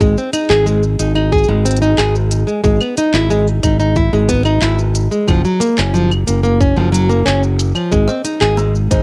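A lo-fi home recording with a cassette-tape haze and a digital ambience opens this pastoral, hopeful slice of folktronica, cut from a longer piece in a straight 4/4. Up front, a small, bright, fingerpicked nylon-string guitar plays arpeggios throughout, its tone softened by tape and trailed by analog delay. Beneath it, a growly, direct fingered electric bass holds the low end alongside a tight, produced electronic kick drum. A quieter organic electronic kit adds claves, handclaps, smooth hi-hats and shaker. The harmony moves from Ab5 through Emaj7/G# and Gbmaj7 before settling back on Ab. Near the close, at 8.1 seconds, a woody, hollow kalimba slips in with short thumbnail plucks as a second line, touched by tape and delay.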